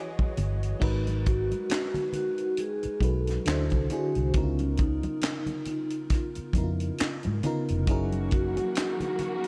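A slow 68 BPM groove in 4/4 with a 16th-note swing sets this brief, introspective late-night slice of neo-soul R&B in G# minor. A tight funk kit enters at 0.2 seconds, acoustic and up front with a high-tuned snare, tight kick, hi-hat, handclaps and crash. Congas with a thin, damped skin sit close and dry in the background, while a vintage muted fingered bass, dark and round, anchors the low end from 0.4 seconds. An FM electric piano with a soft pad layer carries the accompaniment throughout, its detuned, mellow tone shimmering with chorus and tremolo. A soft-mallet vibraphone takes the melody from 1.3 seconds with a ringing, metallic voice and medium motor vibrato, and a lush bowed string section adds sustained chords at the opening and again from 7.9 seconds. The harmony moves through rich extended chords such as Emaj9, G#m7, D9, C#13 and F#13, all set in a dreamy mix soaked in plate reverb with a faint mains hum beneath.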